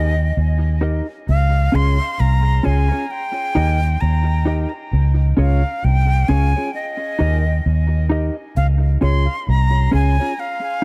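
A dry, echo-heavy mix frames this sunny roots reggae excerpt at 66 BPM with a swung 16th-note feel, where a breathy, bright jazz flute with vibrato and tape echo carries the melody, a mellow, compressed electric guitar with analog chorus and tape echo accompanies over chords alternating between Eb and Db, and a round, punchy, foam-muted bass with tube saturation sits up front until 10.2 seconds.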